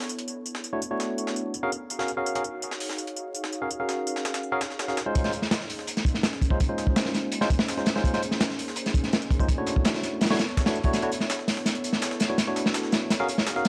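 A 166 BPM drum and bass groove in straight 4/4 opens on a high-passed, sampler-style breakbeat kit of hi-hat, snare and tambourine, pitched up and compressed, until a crunchy, saturated acoustic break with a tight kick and rolled-off top lands up front at 5.2 seconds, starting a build-up that carries into a drum fill from 10.9 seconds. Beneath it, a warbling, detuned lo-fi pad holds dark, nostalgic minor-eleventh chords with chorus and reverb in the background while a filter sweeps over it, and a barky, clean tine electric piano enters at 0.7 seconds with low-passed stabs trailing dub echo. The raw, atmospheric jungle cut sits in light reverb with dry, gritty hardware character and vinyl crackle, taken from a longer piece.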